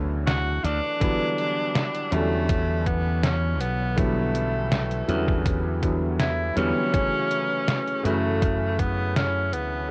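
This vaporwave fragment, cut from a longer piece, carries a nostalgic, melancholic mood over a straight, unhurried pulse. A warm, vintage electric grand piano with a clangy low end and a lush chorus lays down accompanying chords, moving from Dmaj13 to Em9 at 1.0 seconds and on to F#m7, while a bright, punchy slap bass sits up front beneath it. From 0.3 seconds a clear, vintage-toned tenor saxophone takes the solo melody in a pop style, its vibrato and scooped notes trailed by tape echo. A detuned 8-bit drum machine supplies hi-hat and an up-front, medium-tuned snare, joined by a thumpy, sampler-style electronic kick that plays until 8.9 seconds. The whole piece has the sound of a cassette tape, set in light reverb.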